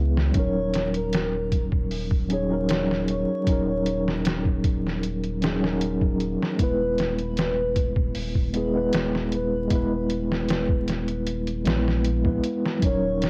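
A straight 4/4 trip hop groove at 77 BPM comes from a muffled, pitched-down sampler-style drum kit with a thumpy kick, entering at 0.2 s over a round sub bass with tube saturation and a mellow tine electric piano colored by tremolo, 12-bit sampler grit, cassette tape and tape echo as the chords move from Ebm7 to E/Eb. From 0.4 s a pure, breathy sine lead sings through phaser, analog chorus and tape echo, giving a brooding, cinematic air to this cassette home recording with vinyl crackle and little reverb. A deep, dark ambient pad surfaces only at 13.3 s, barely audible, at the close of this cut from a longer piece.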